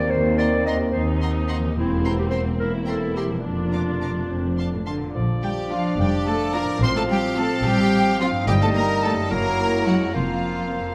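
Swaying in a straight 6/8 at 72 dotted-quarter beats per minute, this playful, whimsical film cue in Bb major has a magical, mischievous air. Distant high violins carry the melody over a clear second violin line, a lush viola section, close cellos and focused double basses on the bass, ringing fingerpicked concert harp arpeggios, sustained French horn chords and a roomy, soft-edged clarinet in the background. Around 5.2 s a new section begins as a clear oboe, a mellow bassoon and an airy silver flute join, with chords like Gb7 and Fsus4 coloring the closing bars inside a moderate scoring-stage reverb before the passage breaks off at 10.9 s.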